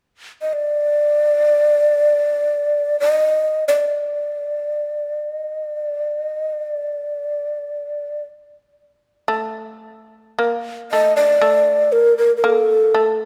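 Japanese traditional chamber music in free time, austere and calm, cut from a longer piece. A breathy, hollow shakuhachi carries the melody from 0.4 seconds, close and up front with vibrato and a crisp, chiffy attack, in light reverb. At 9.3 seconds a plectrum-plucked shamisen enters beneath it as a quieter second line, its fretless tone percussive and buzzing.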